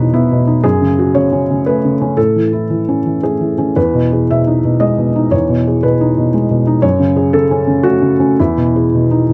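Neoclassical minimalist piano in E major and 3/4, moving with a rubato feel around 108-123 BPM and carrying a hopeful, peaceful mood. A felt-muted upright piano plays alone from 0.0 to 9.3 seconds, its soft, mellow tone sitting intimate and up front, ranging from E2 to E5 through chords of Emaj7, F#madd9 and A. The dry, close 1970s-style studio sound adds light reverb to this short portion cut from a longer piece.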